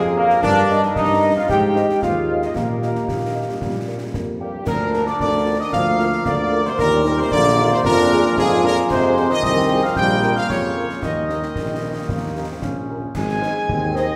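A clear trumpet section carries the melody of this festive, spirited military-style march for wind band, moving at 113 BPM in a straight 2/4 from Eb major into Ab major at 8.9 s. Beneath it, a vintage-toned trombone section holds sustained chords, and a mellow tuba with a soft attack anchors the bass. A dark, tight woodwind section with light vibrato adds a second line from the background, while a very quiet, warm French horn section fills in the accompaniment. A distant, roomy euphonium joins at 3.1 s with its own mellow second line, and a glockenspiel struck with rubber mallets enters at 4.4 s, adding a soft, bell-like, ringing metallic second line high above. Concert snare, clash cymbals with a dark colour and concert bass drum drive the march from a small-room setting, all set in a wet concert hall reverb in this short cut from a longer piece.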